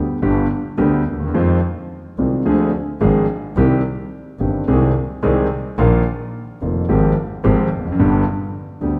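A warm concert grand piano sits up front with a deep bass, carrying the accompaniment through this passionate, melancholic tango excerpt at 108 BPM in 4/4, its rubato feel giving the phrases a yearning pull. A single bowed double bass, clear and earthy with light vibrato, sounds distant beneath it, both parts playing from 0.0 to 9.0 seconds. Chords move from G through Fm7, Ddim, Cm and Ab/C to Bbsus4 and Fmadd9/Ab before returning to G, all bathed in a moderate concert hall reverb.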